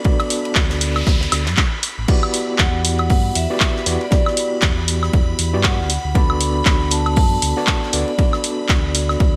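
A swung pulse drives this hypnotic, late-night deep house passage, cut from a longer piece, with a dry, punchy electronic kick sitting up front. A punchy analog drum machine adds crash, handclaps, hi-hat and woodblock with gated reverb, while a very quiet damped 70s kit, dry with dark cymbals and a rolled-off top, supplies soft hi-hat, ride and snare beneath it. A deep, full sine sub bass with an octave enters at 0.6 seconds with sidechain pumping, as a barky, gritty overdriven tine electric piano plays stabs through a combo amp, coloured by fast tremolo, sidechain pumping, a low-pass filter and delay. A shimmering vintage string machine holds a soft, chorused violin texture in the background, and a noise sweep sounds from the back early on before the harmony moves from Bm7/D to Em9 at 2.1 seconds. From 2.6 seconds a metallic, ringing vibraphone, struck with medium hard mallets and its motor off, carries the melody through a digital delay, all within a bright 1980s-style digital production with light reverb.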